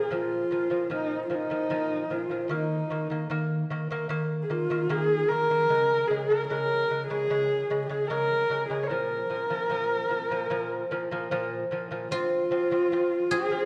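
Windswept and solemn, this short cut from a longer Mongolian folk piece moves at 75 BPM in Bb minor, led by a dark, husky horsehead fiddle up front whose bowed horsehair strings sing an expressive melody with vibrato, portamento and a soft attack. Beneath it, a mellow, fingerpicked lute with double gut strings spins delicate arpeggios, and at 12.1 seconds a bright, silvery guzheng enters with a ringing second line. A recital hall reverb gives the whole a wet, spacious sound with softened highs.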